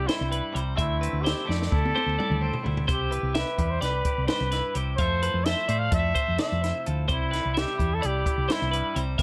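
A breathy trumpet sits up front and carries the melody in this playful, bright fragment of math rock and midwest emo, its soft attack, vibrato and whispered, intimate tone giving the line a vintage pop character. Beneath it, a twangy electric guitar supplies clean, compressed accompaniment, while a twelve-string electric guitar picks bright arpeggios with a warbly pitch drift. A fingered, hollow-body short-scale electric bass is round, dark and amped, placed near the front. A compact cocktail drum kit enters at 0.1 seconds, sounding dry and natural with a high-tuned snare and punchy kick, and plays a fill from 1.5 to 2.9 seconds. The music moves in 9/8 through Cmaj7, D9sus4, Fmaj7 and Cmaj9 in a close setting with little reverb.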